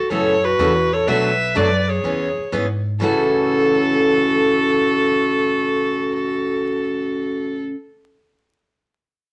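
Vinyl crackle and a moderate studio reverb frame this cheerful, playful country excerpt at 124 BPM in A major with a swung eighth-note feel, where a rich, smooth bowed fiddle with light vibrato carries the melody up front over a bright, boxy picked steel-string acoustic guitar, a clear jazz-style clarinet with scooped notes weaves a second line, and a woody, thumpy pizzicato upright bass on gut strings grounds the A6, Bm7 and E6 changes.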